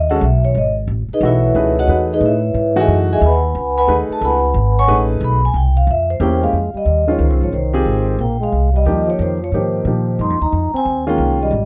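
A dry, close studio sound in a 1970s style frames this short cut from a longer jazz piece, its mood spiritual and cool. At 180 BPM in a swinging 3/4, the music sits in C# minor, moves through C7b9 at 5.5 seconds and settles into F minor on an Fm11 chord at 6.5 seconds. Up front, a vibraphone played with soft mallets carries the melody as a solo over the opening, its metallic, ringing tone shaded by a slow motor vibrato and an airy sheen. Beneath it, a woody pizzicato upright bass with steel strings anchors the low end, while a natural-sounding baby grand piano supplies accompaniment. At 6.2 seconds a mellow, close-miked trombone joins with a vibrato-tinged second line, adding a soloistic voice beside the vibraphone through the final section.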